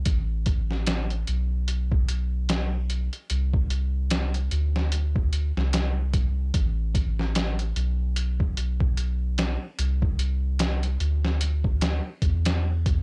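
Trip hop at 74 BPM in 4/4 with a 16th-note swing, smoky and hypnotic, this short excerpt cut from a longer piece pairs a soft dub sub bass with a sampler-style drum kit for its full 13 seconds. The bass sits up front, deep and round with a fast attack and sustained notes ranging from A1 to E2, while the drums, entering at 0.1 s, offer a thumpy kick, medium-tuned snare and hi-hat that sound compressed, pitched down, muffled and overdriven, as if re-recorded in a small room. The mix is dry and close, with little reverb.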